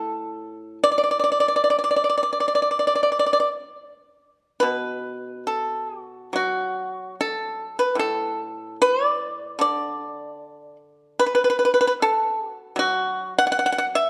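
A solo pipa, plucked with fingerpicks, opens this pastoral, serene fragment of traditional Chinese music, its dry, percussive tone sitting up front in a dark production. The playing moves in a free, rubato 4/4 across a range from low to high, and a new section begins at 4.6 seconds. A moderate recital-hall reverb surrounds the instrument, giving this short cut from a longer piece a calm sense of space.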